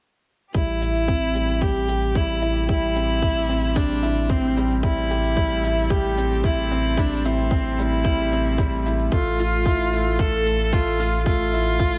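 A tight, up-front electronic kick drives a straight 4/4 pulse, joined by a produced shaker, in this melancholic, moving piano and strings electronica piece cut from a longer work. Beneath it, a round, deep sine sub bass sits on a single low note, its sustained tone pumping through sidechain compression. A bright upright piano plays a riff with woody, intimate character and audible action noise, passing through a low-pass filter whose sweep runs across the whole passage from 0.6 seconds. Over this, a solo viola carries the melody, bowed with vibrato and a smooth, even top, sitting up front in the mix. Far behind, a very quiet string quartet holds rich, distant chamber chords, shifting from Am7 to Fmaj7/A at 9.1 seconds, all within light, small-room ambience.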